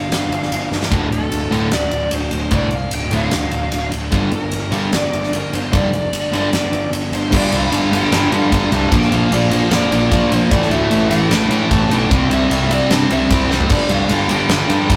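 Up front, a huge arena drum kit pounds out this aggressive, menacing hard rock cut at 150 BPM in a straight 4/4, its punchy kick, fat snare and bright cymbals driving through a pumping room, with fills at 0.7 and 13.5 seconds. A dark, smooth overdriven lead guitar carries the melody from the start, and a fuzz-drenched, growly picked bass digs in beneath it. At 0.9 seconds two picked riff guitars arrive, a bright overdriven electric and a hollow-bodied semi-hollow with a warm tone, landing on D minor before moving to G minor. At 7.3 seconds the second section shifts to a progression through G5, B-flat, A5 and C. The whole take sits in a wet stone room with a rough rehearsal-room feel, and it is cut from a longer piece.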